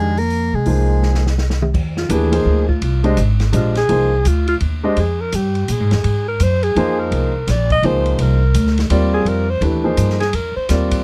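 Spiritual and intense, this modal jazz passage in F dorian moves at 168 BPM in a swung 3/4, built over an Fm11 chord and cut from a longer piece. A bright soprano saxophone with soft-attacked vibrato carries the brief opening melody alongside a breathy alto saxophone, whose subtone-tinged line becomes the solo voice from 1.7 seconds onward. Beneath them, an intimate grand piano with audible action noise and long sustain supplies the accompaniment, while a woody, up-front pizzicato upright bass anchors the low end. An airy, polished acoustic drum kit with dark cymbals, a medium-tuned snare and a boomy kick joins just after the start, playing crash, ride, hi-hat, snare, kick and toms, and its fill from 1.0 to 1.7 seconds leads into the alto solo. The close, detailed miking and dry sound keep the horns and piano immediate and present.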